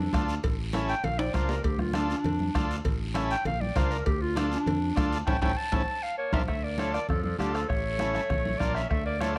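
A smooth-topped, up-front clarinet carries the melody in this driving, passionate cumbia excerpt at 198 BPM in D harmonic minor. Its classical-style solo runs from the start to 6.5 seconds, with an analog delay on its line. Beneath it, a bright, growly fingered electric bass punches out the low end, while a buzzy vintage combo organ with light vibrato fills in the harmony over a cycle of A, Bb and Dm. The percussion is anchored by a close, dry bombo played with a soft beater, joined by damped, saturated congas in the background, a raspy guiro, and ringing metal-shell cowbell and timbales that play until about 6.4 seconds. A drum fill and a band accent close the first section, and at 6.2 seconds a clear tenor saxophone enters in the background as a second line, full of vibrato and scooped notes, while light reverb lends the whole mix a touch of space.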